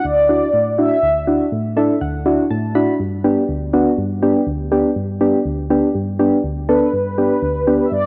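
A dry, gritty recording sits inside a lush hall reverb, giving this short, bright pop fragment from a longer piece a roomy glow around its rough edges. Soft, round keys with an electric-piano character carry the accompaniment throughout, their vintage, warbling chorus tone full-bodied and dark, placed up front in the mix. A mellow synth brass line with a brassy, detuned sawtooth edge, vibrato, chorus and analog delay states the melody at the opening, drops out at 1.7 seconds, and returns at 6.7 seconds. Just before the brass exits, the keys step forward with a fill from 1.5 to 3.0 seconds, and as the fill ends the harmony moves from Dadd9 to G. The mood stays upbeat in a straight four-beat pulse.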